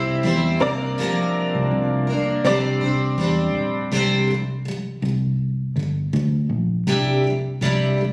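Easy-going and heartfelt, this short cut from a longer acoustic pop piece moves with a light swing over chords that settle from C through Bbadd9/C and Csus2 to a closing Cadd9. A clear, woody upright piano with long sustain and plate reverb sits up front until it stops at 4.0 seconds, while a full-bodied, double-tracked dreadnought guitar, picked and bathed in plate reverb, carries on to the end. Beneath them a dark, round, foam-muted electric bass sounds direct and amped, and the whole take has the intimate feel of a phone recording in a small room, polished with studio reverb and compression.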